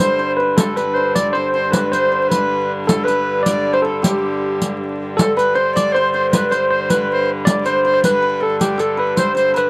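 Vinyl crackle and a modest booth ambience frame this festive, ancient-sounding medieval dance in 6/8, where a clean tine electric piano heard through its built-in speakers carries the melody over an airy, chiffy bass recorder and a shimmering, ringing hammered dulcimer on second lines, while a reedy, distant hurdy-gurdy holds a low drone and an up-front riq with dark jingles, played with soft hands, supplies the percussion throughout the 9.7-second excerpt.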